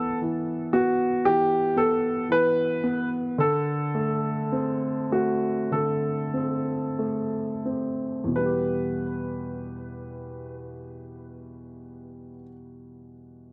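A present, long-sustaining grand piano carries a longing, emotional pop melody through tape echo until 12.4 seconds, over a woody, natural upright piano accompaniment, as the pace slows through the opening 8.3 seconds in a dry, close, small-room sound with a 1970s studio character, in this excerpt cut from a longer piece.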